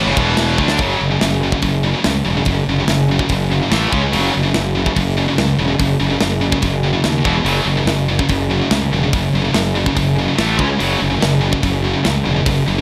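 Heavy metal in F# minor at 144 BPM with a dark, heavy mood, opening on a very quiet, lush bowed string section that holds sustained chords only until 0.8 s, while a tight acoustic drum kit with a medium-tuned snare and rolled-off top enters at 0.2 s and plays a fill at 0.6 s. From the very start, two bright, picked, distorted electric guitars, one high-gain and up front, drive a riff over E5, F#5, A5 and C#5 power chords alongside a growly, fuzz-overdriven fingered bass that sits up front, all in a light reverb in this fragment of a longer piece.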